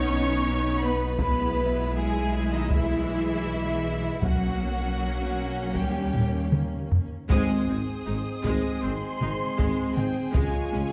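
In a straight 4/4 pulse, this heroic, triumphant cinematic orchestral cue sets a vibrato-laden violin section on a focused, lush melody over a second, more intense violin line, with bright, close violas accompanying, mellow French horns sustaining chords in the background, and smooth cellos and distant double basses anchoring the bass. Hard-stick taiko drums enter at 1.2 s and play a fill at 6.2 s leading into a full band accent at 7.3 s, where a roomy solo tuba joins the low end, all bathed in a wet scoring-stage reverb with a dark production.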